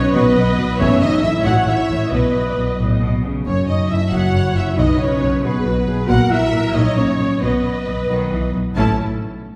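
This excerpt from a soaring, adventurous heroic film score in 6/8 at 91 BPM opens with a clear, intense violin melody over a focused second violin line, expressive violas with portamento, mellow close-miked French horn chords, ringing fingerpicked harp arpeggios and dark, distant trumpet stabs, while rich, lush cellos and double basses carry the bass in a reverberant scoring-stage sound, soft-mallet timpani add very quiet, round strokes at 0.8 s and 8.8 s, and the harmony moves through B, F#m7 and F#7/A#.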